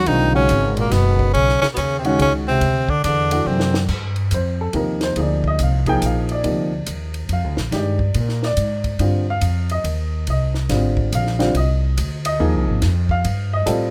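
Close, detailed microphones and little reverb give this modal jazz excerpt an intimate, dry sound, with an intense, hypnotic mood at 141 BPM in a swung 3/4. A bright tenor saxophone with soft-attack vibrato carries the melody up front, while a mellow bass clarinet with light vibrato and subtone plays a second line beneath it; both drop out at 3.8 s. A drum fill from 3.5 to 3.9 s on a compact cocktail kit, with dark cymbals, a high-tuned snare and a punchy kick, leads into a section settled in G phrygian. From there the baby grand piano, intimate with audible action noise and short sustain, carries on with the drums and the pizzicato upright bass, whose woody, growly steel-string tone sits up front. The harmony moves from Badd9 and D to Gm7, then Ab, and closes on F7 at 12.8 s.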